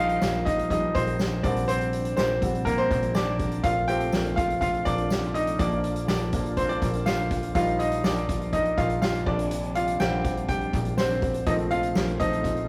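A brilliant, woody upright piano takes the lead in this anthemic piano-driven pop excerpt at 123 BPM in 4/4, ringing with short sustain up front over chords moving from Ebadd9/Bb through Csus2/Bb and F/Bb to Bb. Beneath it, a punchy, saturated analog bass blending sawtooth and square waves with ring modulation holds a plucky Bb1. Soft-mallet drums add a punchy kick and a rolled-off top, while a reedy tonewheel organ with slow rotary speaker and a jingly, close tambourine sit very quietly in a rough rehearsal-room sound with moderate stone-room reverb.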